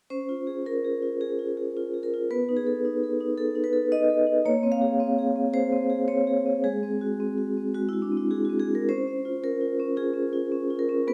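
Warm and playful, this excerpt from a contemporary classical piece for solo vibraphone moves in a rubato 4/4 around 109 BPM in Db major, with the up-front, metallic, ringing tone of medium mallets and a fast motor vibrato caught by close, detailed microphones in a moderate recital hall reverb, as its harmonies pass from Dbmaj7 through Cb7, Bbm9 and Abaug7 back to Dbmaj7.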